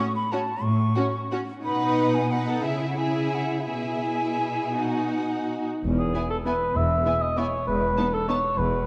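Classical orchestral ballroom waltz in 3/4, elegant and sweeping, with a rubato feel and a dark production in a wet concert hall. A lush violin section carries the melody softly in the background, while an airy, hollow flute plays a second line until 5.7 s alongside focused second violins and rich violas, with clear cellos up front on the bass. Smooth double basses join at 5.8 s, and at 6.0 s a mellow, distant cor anglais takes up a second line before the passage is cut off.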